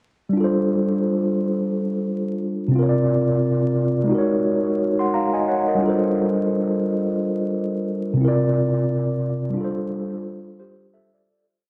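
A mellow tine electric piano plays alone from 0.3 seconds in this reflective, nostalgic hip hop piece at 88 BPM with a swung 16th feel, sitting up front with held, spread-voiced chords moving through G9sus4, C9sus4 and Ab9sus4, dressed with grace notes and short fills, its clean tone coloured by cassette tape, a low-pass filter and analog delay, all within an echo-heavy mix of plate reverb and vinyl crackle before fading out from 8.5 seconds.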